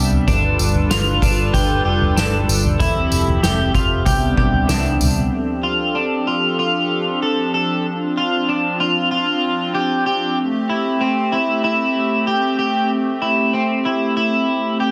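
Dream pop at 95 BPM in a straight 4/4, this cut from a longer piece feels floating and dreamy. A hollow, flute-like pad with a soft attack and chorus holds sustained chords throughout, while an electric guitar at the edge of break-up, slightly broken-up and picked, plays arpeggios through analog chorus and tape echo. In the opening stretch a dark, foam-muted, round electric bass anchors the low end beneath a distant, roomy soft-mallet drum kit with a punchy kick, medium-tuned snare, tambourine and toms. Bass and drums stop at 5.3 seconds, leaving pad and guitar alone as the harmony moves from F6 through Dm7/F to Am7. Light reverb and small room ambience surround a dense, heavily limited modern master.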